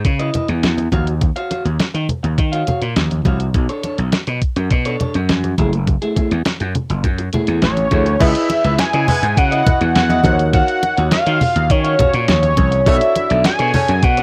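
This late-night, slick slice of early-eighties boogie funk opens with a growly, overdriven slap bass and a clean 12-bit drum machine up front, its thumpy kick and fat snare joined by hi-hat and crash. Alongside them, a slightly broken-up, compressed electric guitar picks out a riff with subtle chorus. Low-tuned, thick-skinned congas played with soft hands sit close and dry in the background from 0.3 seconds, while the harmony moves through minor ninth chords. At 7.6 seconds a detuned sawtooth lead with a sub octave and a saturated, mellow tone steps forward to carry the melody. From 8.2 seconds a grand piano with plate reverb adds background accompaniment, and a clear, pop-style horn section with octave doubling and light vibrato plays brief second lines. A cassette-tape haze colours the guitar, drums, lead, horns and piano of this home recording, which carries a light reverb and is cut from a longer piece.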